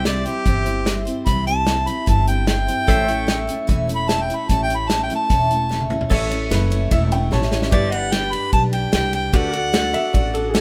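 Nostalgic and easygoing, this brief honky-tonk and classic country cut at 149 BPM features a mellow, up-front harmonica soloing with light vibrato and scooped notes over woody pizzicato upright bass, a punchy natural drum kit, a bright picked dreadnought acoustic guitar with finger squeak, a clean pedal steel guitar holding sustained chords in the background, and a very quiet, clear grand piano, while a boxy upright piano adds a second line from 6.1 seconds, all in a dry, small-room sound.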